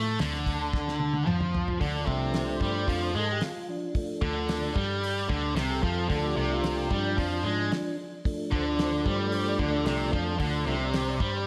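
Classic rock in D minor at 112 BPM, swaggering and driving, this short clip opens with two bright, overdriven guitars, one a cranked stack and the other up front with slapback echo, riffing over a dark, round, foam-muted picked bass and a dry, damped 70s drum kit with a fat snare and tight kick that plays a fill from 0.7 to 1.8 seconds. At 1.8 seconds a clean tonewheel organ enters with key click and a slow rotary speaker, taking a solo of sustained chords through to the end. A lush hall reverb gives the mix a big arena sound.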